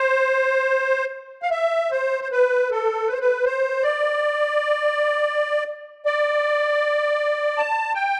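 Haunting and longing, this short excerpt of Celtic folk unfolds in 3/4 at a rubato pace hovering around 73-82 BPM, tuned slightly high to A4 = 444 Hz. A solo musette accordion carries the whole passage, sounding from 0.0 to 8.2 seconds and moving between A4 and A5. Its voice is reedy and shimmering, with a wet musette tuning, and it sits up front in the mix. The instrument is framed by a moderate recital hall reverb with a 1.5-second decay, and the production leans dark and warm. A brief opening phrase gives way at 1.5 seconds to a restatement of the same material, cut off as part of a longer piece.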